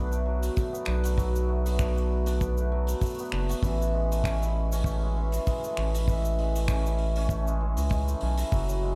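A gently swung sixteenth-note groove in 4/4 drives this wistful, autumnal folktronica fragment, carried by a quiet brush kit of cabasa, finger snaps and hi-hat, with a punchy acoustic kick entering at 0.6 seconds. Up front, a shimmering, hammered cimbalom rings out arpeggios through a delay, while a deep, wave-folded analog bass blending square and sine tones sustains beneath, shifting from Bm7 to Amaj7 at 3.6 seconds. The production is dark and dry, with a close studio-room feel.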